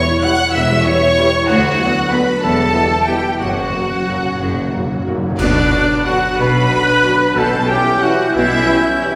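In a rubato 3/4 lilt, this dark, sweeping orchestral ballroom waltz, cut from a longer piece, sets an intense, lush violin section on the melody, supported by an airy flute section, a present clarinet and a smooth-topped second violin section, while ringing, fingerpicked harp arpeggios, viola section accompaniment and sustained chords from the trombone and soft-edged French horn sections fill the middle. Bowed cellos and a focused double bass section carry the bass in the background alongside a mellow, very quiet tuba, and a dry timpani fill from 3.4 s leads into a band accent at 5.4 s, where dark cymbal clashes with concert bass drum mark the moment. At that point, trumpet section stabs and a distant, very quiet oboe join, all set in a reverberant recital hall.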